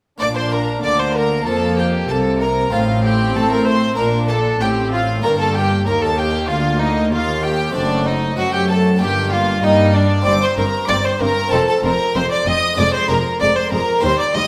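A straight 4/4 pulse at 96 BPM drives this brilliant, festive baroque-style concerto movement in Bb major, cut from a longer piece that features solo episodes. A rich solo violin sits up front, carrying the melody with light vibrato and a reedy gut-string tone. A close violin section also carries the melody an octave higher, while a second violin section in the background adds a supporting line in the soloist's register. A round, plucked harpsichord in the French style and a smooth-topped viola section fill in the accompaniment behind them. A dark cello section and a studio double bass section, both bowed in period style, anchor the bass from 0.2 to 14.4 seconds. The harmony moves from Bb through Gm and D7/F# before settling on a Bb7/F near 12.8 seconds, all set in a moderate recital hall reverb.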